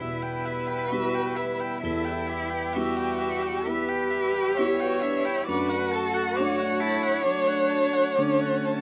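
Flexible rubato in 4/4 gives this neoclassical piano-and-strings passage, cut from a longer piece, a fragile, longing mood. A single bowed violin sits up front carrying the melody with vibrato, portamento and soft attacks, while one cello plays a clear, smooth second line beneath it. A felt-muted upright piano supplies dark, intimate accompaniment with its action noise audible, and a solo viola adds a higher accompanying part, expressive and close. Further back, a reedy hand-pumped harmonium breathes sustained chords, and a vibraphone struck with hard mallets rings out metallic arpeggios with a slow motor vibrato. The harmony moves from E minor to D over F sharp at 5.5 seconds, and light reverb lends the ensemble a modest sense of space.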